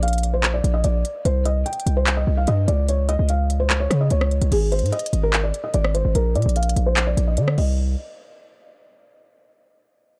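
Trap-flavoured hip hop excerpt with an eerie, menacing half-time feel, where a muted, intimate felt piano carries the melody through a low-pass filter and digital delay, its audible action noise intact and a filter sweep on it from 4.5 to 7.8 seconds, over a punchy, heavy 808-style bass with a noise layer that sits up front and crisp hats, handclaps, rim clicks and crash from an electronic trap kit, all in a dark, dry production.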